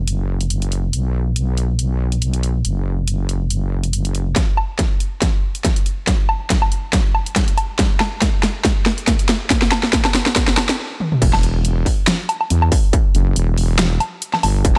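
A heavy, saturated wobble bass opens this menacing, chaotic slice of heavy wobble dubstep, its sawtooth and sine layers thickened with chorus and overdrive, compressed and pushed up front in a deep low register. Beneath it, an electronic, layered dubstep drum kit of huge snare, bright hats, crash, toms and woodblock drives a half-time 4/4 groove with a light swing on the sixteenths. The bass drops out as a distorted electronic kick enters at 4.4 seconds, launching a build-up filled with a long drum fill that carries tape-warm grit. A brief stop arrives at 10.8 seconds, punctuated by a quick fill at 11.0 seconds, before the drop hits at 11.2 seconds, when the sustained, fast-attack wobble bass returns over the distorted kick and kit. A digital ambience surrounds the mix, and the passage is cut from a longer piece.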